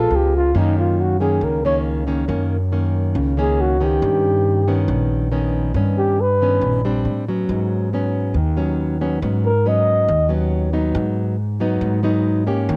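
A breathy flugelhorn, fingerpicked nylon-string guitar and pizzicato upright bass start together in this relaxed, sunny bossa nova fragment, cut from a longer piece. The flugelhorn takes the solo melody, close-miked and intimate, with a dark, whispered tone, soft attacks, scooped notes and vibrato in a jazz style, colored by a cassette tape effect. It carries the tune until 6.8 seconds, then returns briefly at 9.5 seconds. Underneath, the classical-style guitar offers a shadowy accompaniment with audible finger squeak, while the woody, thumpy bass sits up front beside it. The harmony moves through rich chords such as F#6, Am11 and G#m7, and the whole sound has the light reverb and homespun character of a cassette home recording.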